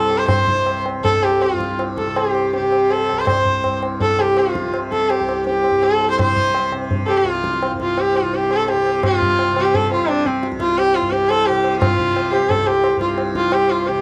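A bright, nasal sarangi carries the melody up front, one bowed player gliding between notes with light vibrato and portamento while its sympathetic strings add an earthy ring. This radiant, devotional Hindustani classical passage, cut from a longer piece, moves in 4/4 with a straight feel at 158 to 178 BPM, speeding up throughout. Beneath it, a softly plucked tanpura holds a buzzing, shimmering drone in the low register, and a high-tuned tabla with a short ring enters at 0.1 s. A reedy, breathing pedal harmonium sits very quietly as a second line until it stops at 7.8 s, and a new section begins at 9.0 s. The sound is dry and close, in the manner of a 1970s studio recording, with only light reverb.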